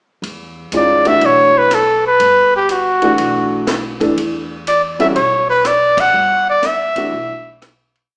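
Hypnotic and intense, this brief modal jazz piece swings at 122 BPM in E dorian on an Em9 chord, with a bright, forceful, close-miked trumpet playing hook-like motifs up front over intimate grand piano comping in syncopated quartal voicings with audible action noise, a woody, growly pizzicato upright bass in a two-feel, and a compact cocktail kit with a punchy kick, high-tuned snare and stick ride pattern, all in a wet recital-hall reverb with a small-speaker sound, a band accent at 5.9 seconds and a fade-out from 6.1 seconds.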